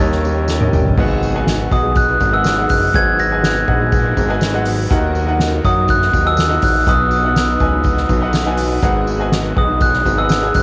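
A short grand piano fill over a D#7 chord opens this bittersweet, dramatic piano-driven pop excerpt in G# minor at 122 BPM. A drum fill follows at 0.5 seconds and leads into the main section at 1.0 seconds, where the harmony moves through G#m7, D#m and B. A ringing, bell-like glockenspiel played with soft plastic mallets carries the melody high above the band. Beneath it, a clear, open concert grand with deep bass supplies the accompaniment, and a very quiet, dark fingerpicked steel-string guitar adds a riff with audible finger squeak. A fat, detuned sawtooth bass with a saturated filter pluck and evolving tone anchors the low end, joined by a soft-mallet drum kit with a boomy kick, a fat snare and a big-room sound. A very quiet, lush bowed string section holds sustained chords with vibrato and portamento, a jingly tambourine sits in the background, and the glockenspiel, piano and drums share the cassette-tape character of a home recording with light reverb.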